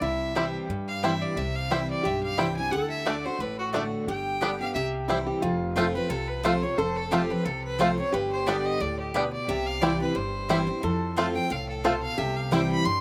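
Bluegrass at a lively, virtuosic 178 BPM in C major with a swung feel, cut from a longer piece, led by a biting, intense fiddle with light vibrato on the melody and a slide-played, metallic lap resonator guitar on a second line, both carrying slapback echo. Up front, a full-bodied picked dreadnought steel-string acoustic guitar with finger squeak and a twangy, percussive banjo playing arpeggios from 0.4 s share the foreground, while a dark, thumpy pizzicato upright bass with gut strings sits beneath and a woody, double-strung mandolin adds stabs in the background with its own slapback echo. The sound is dry and open-air, and the tune moves into a new section at 5.4 s.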